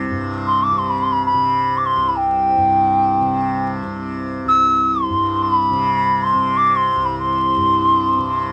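Unfolding in free time, this short Hindustani classical passage is cut from a longer piece and carries a meditative, devotional mood. A tanpura sounds from the very start, softly plucked between C2 and C3, its buzzing, shimmering drone giving an acoustic bed beneath everything that follows. At 0.5 seconds a bansuri enters, sitting up front in the mix and singing in a high register from G5 to E6. Its bamboo tone is airy and reedy, with a crisp attack and vibrato colouring its line. Light reverb and a layer of vinyl crackle lend the recording a worn, intimate patina.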